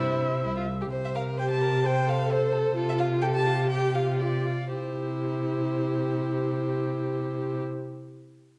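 A string quartet opens together on a C major chord, launching a short, spirited and cheerful passage cut from a quick classical-period movement in 2/4, played with a flexible, rubato feel. The first violin carries the melody in a rich, smooth and even tone with vibrato, while the second violin adds a focused second line beneath it, its upper edge kept smooth. The viola fills in the accompaniment with a soft attack, expressive portamento and close, intimate presence, and the cello anchors the bass with a focused, up-front sound. The harmony moves from C through Fadd9/C and F/C before settling back on C at 4.7 seconds, with the pace slowing between 2.3 and 4.7 seconds before a brief second section. A recital hall's generous reverb surrounds the players, lending the whole a dark, warm production.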